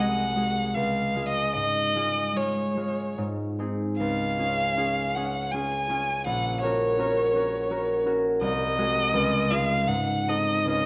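Tender and serene, this short romantic classical excerpt for violin and harp moves in a rubato 3/4 at 69-84 BPM in Db major, with a clear, focused, close violin singing the bowed melody with vibrato over the mellow, ringing, fingerpicked concert harp accompaniment, both up front throughout its 10.9 seconds in a moderate recital hall reverb, the whole sound colored by worn, warbling old cassette tape with wavering pitch drift.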